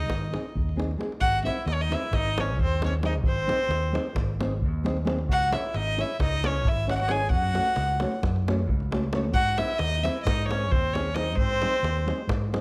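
A rich, reedy violin with light vibrato and a gut-string tone leads this restless, virtuosic Balkan wedding-band tune, cut from a longer piece, in a straight 9/8 at 266 BPM in eighths and in G# phrygian dominant. A soft-attack trumpet carries a distant, roomy second line beneath it, while a punchy, amped fingered electric bass sits up front beside a deep davul, and a dark, woody, thumb-plucked nylon-string guitar joins at 0.3 seconds. The harmony moves from G# to C#m at 5.3 seconds, then to F#m before returning to G#, heard through close, detailed microphones with light reverb.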